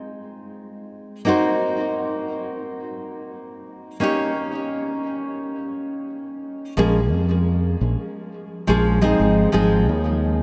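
Relaxed and warm, this short sunset chillout passage, lifted from a longer piece, drifts along in a straight, easy 4/4. A fingerpicked nylon-string guitar carries the accompaniment from the start, its full-bodied, deep classical tone sitting up front with a touch of finger squeak and a tape echo trailing behind it. Under it the harmony moves from Fm7/Ab through Cm7b5 and Eb7 to Bbm7, then returns to Fm7/Ab. At 6.8 seconds a fingered electric bass arrives, punchy, direct and amped, adding a low foundation as the guitar falls away at 9.9 seconds. The whole mix is dreamy and soaked in a long cathedral reverb, giving the up-front parts a spacious, floating halo.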